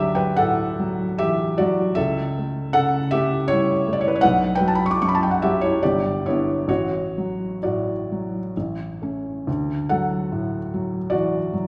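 Nostalgic and dreamy, this short excerpt from a romantic classical nocturne unfolds in a gentle, swaying three-beat metre with a freely breathing rubato feel. A felt-muted upright piano plays alone throughout, its soft, mellow tone carrying an intimate quality, and the audible clatter of its action adds a natural, close-up character. The piano sits up front in the mix, yet a wet recital hall reverb places the listener further back in the room, lending the notes a lingering halo. The harmony drifts through simple, tender changes, touching a G chord at 5.8 seconds before returning home to D at 9.5 seconds. Spanning from deep bass to bright upper notes, the playing evokes a quiet, reflective evening.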